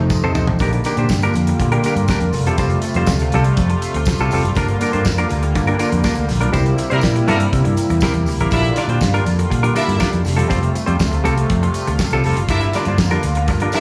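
A round, punchy fingered electric bass drives this sultry disco excerpt at 121 BPM in straight 4/4, with a dry 70s drum kit beneath it that has a fat snare and a tight kick. A short drum fill opens the clip, and then the band settles into a chord cycle of Bb6, Fadd9, Gm7 and C7. A clean, compressed semi-hollow electric guitar sits up front in accompaniment, while a shimmering, retro pulse-width pad with chorus holds sustained chords and a jingly tambourine rings in the background. During a band accent, a distant, roomy horn section adds brief stabs at 6.9 seconds, and from 8.5 seconds a lush, bowed string section with vibrato carries a second line. Light reverb and small room ambience frame the band.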